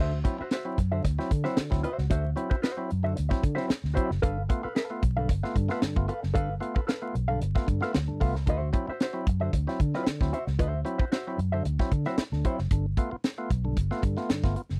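A tight, up-front funk drum kit with a high-tuned snare drives this energetic, playful D mixolydian groove at 113 BPM alongside a round, foam-muted fingered electric bass, percussive stabs from a lightly overdriven tonewheel organ with key click, and a dark, compressed hollow-body jazz guitar through wah that drops out at 12.6 s, all moving between D9 and G9 in a dry, close 1970s-style sound with light reverb and vinyl crackle.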